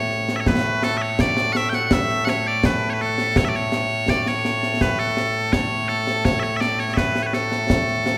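Proud and ceremonial, this short cut from a longer piece of Scottish traditional pipe music moves at 83 BPM in a straight 2/4 in A major, with loud, piercing bagpipes carrying the continuous melody up front from the start while concert snare and bass drum with dark cymbals join at 0.1 seconds, all set in the moderate reverb of a church or concert hall.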